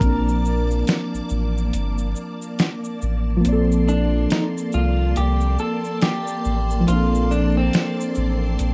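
Nostalgic and dreamy, this swung lo-fi hip hop passage, cut from a longer piece, has a slightly broken-up electric guitar with analog delay carrying the melody over warbling, detuned synth keys with chorus and cassette-tape wear, shimmering vintage string-machine violins, a round, deep dub sub bass and a gritty sampler-style kit with a thumpy kick and fat snare, set in light reverb and vinyl crackle, with a break at 1.7 seconds, the kick muted from 3.4 seconds and a synth keys fill at 8.6 seconds.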